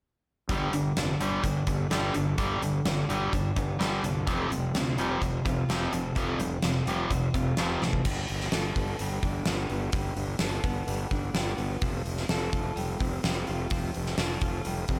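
Brooding and dark, this cut from a longer quiet-loud alternative rock piece at 127 BPM in 4/4 sets a biting, overdriven electric guitar riff up front until 8.0 seconds over picked steel-string acoustic arpeggios sitting in the background with an auditorium sheen, a round, fuzzed fingered bass, and a huge arena drum kit with a fat snare and punchy kick that plays a fill at 7.8 seconds, all in light reverb as the chords move between Gadd9 and Fadd9.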